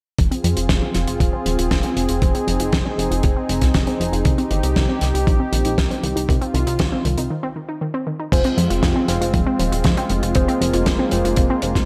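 Bittersweet and nostalgic, this italo disco excerpt at 118 BPM in F minor moves from Fm to Cm over a smooth, detuned analog pad with chorus, a glossy chorused synth bass, a lush, warbling unison pluck arpeggio with delay and a filter sweep sitting in the background, a gritty, thumpy electronic kick and a dry, damped 70s drum kit with a fat snare and gated reverb, before a break at 7.3 seconds gives way at 8.3 seconds to retro chorused polysynth stabs tinged with cassette-tape character and delay.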